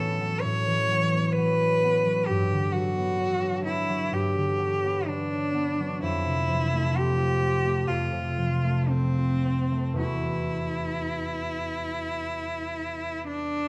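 Rubato in 4/4, this hazy, wistful impressionist classical duo sets a single bowed cello, rich and focused with vibrato and a smooth top, over a bright, ringing concert harp plucked with the thumb, both up front throughout the 13.7-second excerpt as the harmony drifts through A69, Gmaj7, Fmaj7 and Emadd9 in a moderate recital hall reverb caught by close, detailed microphones.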